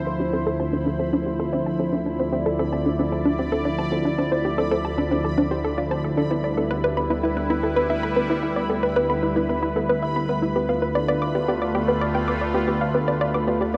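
A bright, detuned sawtooth pad sweeps up front on sustained Dm7, Em/D and G7/D chords in D dorian, while a gentle, nasal round pluck arpeggiates softly in the background and a bubbling, resonant texture of random filter steps fades in behind them. From 0.1 seconds a hollow, bouncy square-wave pluck with a sub octave and a wave-folded edge plays a riff, carrying tape echo as the arpeggios also do. This mysterious, hypnotic piece of sequencer-driven ambient space music moves at 113 BPM in a straight 4/4, all bathed in a huge reverb with an 8.8-second tail.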